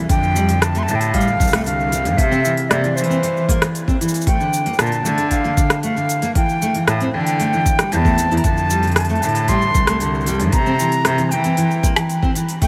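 A close-miked wooden flute carries the melody in this delicate, pastoral folktronica excerpt, its airy, woody tone marked by vibrato and tongued notes and trailed by analog delay. Beneath it, a dark, full-bodied dreadnought steel-string guitar is fingerpicked in arpeggios, with finger squeaks audible through a lush chorus and its own analog delay. A clear, earthy cello, bowed by one player with light vibrato, sits up front as the bass line before dropping out at 11.8 seconds. A soft, tape-toned electronic kick, the most prominent drum part, anchors a straight 4/4 pulse, joined by a quieter organic electronic kit of cabasa, crisp hi-hats and rim clicks, both re-recorded in a small room. The chords move through F6/9, C, Bbmaj7 and A7 (omit 3), then back to F6/9 and on to C7, and the whole mix is soaked in a huge ambient reverb that gives it a dreamy haze.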